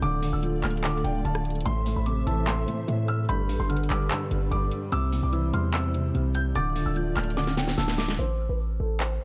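A punchy, heavy 808 bass sits up front in this dark, wistful yet triumphant trap piece, cut from a longer track, at 147 BPM in a half-time feel over a Dm, Am, Gadd9, C progression. An electronic kit adds a sharp snare, metallic hi-hats, handclaps and rim clicks, while a mellow baby grand piano carries the melody with audible action noise over a soft, felt-muted upright piano accompaniment, both low-pass filtered. A lush, bowed string section holds sustained chords, and a pure FM synth bell with chorus and delay sits in the background from 1.7 seconds; a drum fill arrives at 7.4 seconds, and from 8.2 seconds the hi-hats are muted as the strings, upright and bell stop, leaving piano, bass and drums in a reverb-rich, warm mix.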